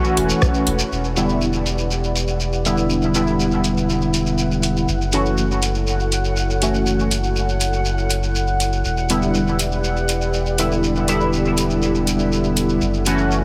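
Cavernous and deep, this dub techno excerpt at 121 BPM in E dorian moves between F#m7 and Em7, led by bright, juicy, detuned polysynth stabs up front that carry a resonant filter sweep from 0.9 s through chorus, phaser, cassette tape and dub echo, over a warbly, lo-fi pad holding mellow sustained chords, a bubbling stepped-filter texture in the background, and a round sine sub bass, with these four parts pumping to the sidechain, while a booming analog drum machine adds metallic, low-passed hats and rim clicks, a grainy shekere rustles throughout, and a brief electronic kick lands at 0.4 s, all within a heavily compressed, radio-like sound with light digital ambience.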